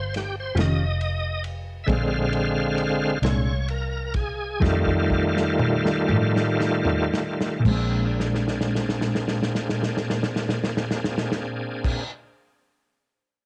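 A bright, shouting tonewheel organ leads this soulful, swaggering slow blues in 12/8, its lightly overdriven sustained chords turning through a slow rotary speaker and chorus vibrato as it takes a solo over the first 7.7 seconds while the pace slows. Beneath it, a round, foam-muted fingered bass and a small-room soul drum kit with dark cymbals and a punchy kick carry the groove, the drums adding fills from 4.6 seconds and again from 8.2 seconds. A clean, compressed electric guitar with harmonic tremolo joins at 0.6 seconds to comp behind the organ, and the whole piece has the feel of a home cassette recording cut from a longer performance.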